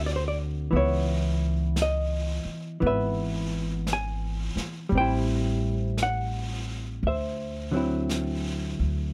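Dark, clean hollow-body guitar accompaniment and a woody, thumpy pizzicato upright bass open this smoky, intimate jazz ballad fragment at a slow 57 BPM swing, joined at 0.7 seconds by a vintage brushed kit with a rolled-off top, the close, dry sound keeping the guitar and bass up front as the harmony moves from D through C#m9 and Am7 to D9.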